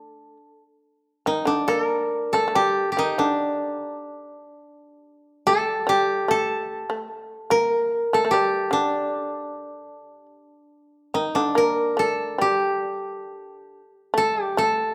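Japanese traditional chamber music in G hirajoshi, this meditative, austere excerpt moves in a rubato 4/4 around 67-76 BPM, with a bright, woody koto played with fingerpicks carrying the melody up front from D4 to Bb4 while a buzzing, percussive, plectrum-plucked fretless shamisen adds a quieter second line from D3 to Bb3, both sounding throughout the 14.9 seconds in a moderate recital hall reverb.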